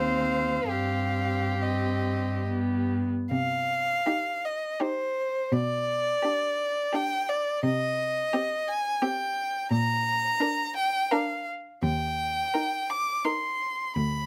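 Classical string quartet in a slow, elegiac romantic movement in C minor and 3/4, drifting with rubato between 65 and 89 BPM, where a clear, up-front first violin sings a smooth, vibrato-rich melody between C5 and D6 over a second violin's smooth, even inner line, a viola's rich accompaniment and a close, rich cello bass, all bowed by single players and captured with intimate, detailed microphones and little reverb, the solemn harmony settling from C minor through G and Bb to an Eb chord at 11.8 seconds before the excerpt is cut at 14.3 seconds.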